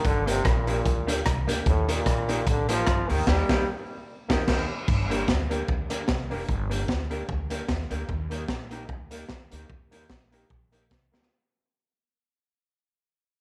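A small room with light reverb frames this short ska passage, cut from a longer piece: a mischievous, driving groove at 149 BPM in 4/4 with lightly swung eighths, moving between G minor and E-flat. A bright, punchy trombone carries the melody with light vibrato and scooped notes, sounding distant and roomy, until it drops out at 3.7 seconds. Underneath, a crunchy breakbeat drum kit sits up front, saturated and gritty with a pumping room, a high-tuned snare, a tight kick, rim clicks, hi-hat and crash cymbal. A woody pizzicato upright bass on steel strings holds the low end, while an electric guitar through a small old amp adds slightly broken-up, lo-fi picked accompaniment. A dark upright piano with audible action noise and short sustain punctuates the groove with stabs from the background. After a band accent around 3.3 seconds, the track begins fading out at 4.9 seconds and closes on a brief drum fill.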